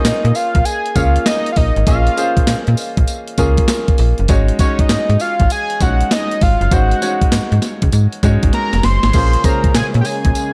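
A snappy, metallic-edged FM bass sits up front in this slick, confident new jack swing excerpt in Bb minor, moving at 99 BPM in 4/4 with a swung sixteenth-note feel. A gated 80s drum machine punches alongside it with a thumpy kick, gated-reverb snare, handclaps, hi-hat, tambourine and crash, carrying a tape-tinged, small-room character, and a drum fill arrives at 8.5 seconds. Over this, a fat, detuned sawtooth lead with a sub octave, filter sweep, vibrato, chorus and digital delay carries the melody high, while a clear, polished concert grand piano supplies short-sustained accompaniment. The harmony moves from Bbm9 to Ab7sus4 and back, and at 9.1 seconds a lush, airy unison pad with chorus and phaser slowly blooms beneath the final chord. The production is dark overall, wrapped in digital ambience.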